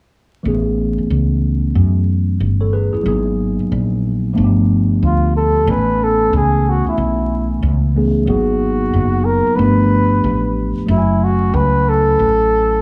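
A mellow tine electric piano opens at 0.4 s, sounding worn and slightly out of tune under a phaser, joined almost at once by a round, punchy fretless bass with a dark, hollow-body tone. This is a smooth, relaxed hip hop groove in A major at 92 BPM, swung on the sixteenths, with the chords moving from Amaj9 through G#m9 and G9 before the progression repeats and settles on F#m7. At 5.0 s a breathy flugelhorn takes the lead as a jazz-style solo, its soft attack and light vibrato trailed by tape echo. All three parts sit up front, with the piano and bass direct. Vinyl crackle and a small room ambience with light reverb give the cut a dusty, lived-in feel, and it plays as a fragment of a longer piece.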